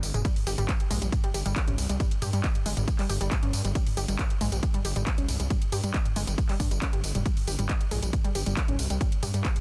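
A heavy, overdriven electronic kick drum sits up front through this dark, intense stretch of driving peak-time techno, a short cut from a longer piece moving at 137 BPM in a straight 4/4 around G locrian. Beneath it, a gritty, aggressive synth bass built from sawtooth and sine tones with oscillator sync and a resonant filter pluck growls between F1 and G2, pumping through sidechain compression. A layered techno drum kit, also overdriven and up front, fills in handclaps, smooth hats, ride cymbal, tambourine and toms across the full 9.6 seconds. Higher up, a warbling, lo-fi pluck riff between G3 and G4 brings detuned sawtooth tones with a noise layer, shaped by chorus, tube saturation, sidechain pumping and dub echo into a mellow, evolving figure. The mix is dry, with little reverb, and the master is dense and heavily limited in a modern style.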